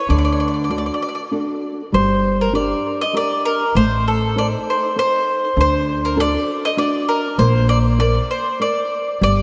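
A bowl-back mandolin sits up front with the melody, its picked double strings warm and touched with tape echo, in this sunny, romantic Italian folk serenade excerpt moving at 99 BPM in 3/4. A small, dark-toned nylon-string guitar, thumb-plucked on fresh strings, and a woody pizzicato upright bass join at 0.1 seconds, moving through chords such as D, Gm and Bbadd9. A lush hall reverb soaks the whole mix, giving it a dreamy, spacious glow.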